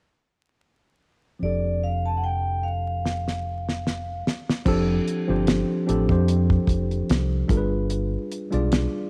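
A ringing, metallic vibraphone, struck with medium hard mallets and played with its motor off, carries the melody from 1.4 seconds, sitting up front in a boxy small room with a cassette-tape tint. It is the lead voice of this sensual, smooth R&B and neo-soul fragment, cut from a longer piece and moving at 74 BPM in 4/4 with a light 16th-note swing in F major. Beneath it, a worn, slightly out-of-tune tine electric piano, mellow yet clean, holds the accompaniment through F6 and G7b9 harmonies, also carrying a cassette-tape colour. A deep dub fingered electric bass, dark and round with a direct, amped tone, anchors the low end up front. A damped 70s drum kit enters at 3.1 seconds with a fill that leads into the second section, bringing a fat snare, tight kick and dark cymbals with a dry, rolled-off top through the same tape sound. The whole piece sits in a home-recorded studio ambience flecked with vinyl crackle.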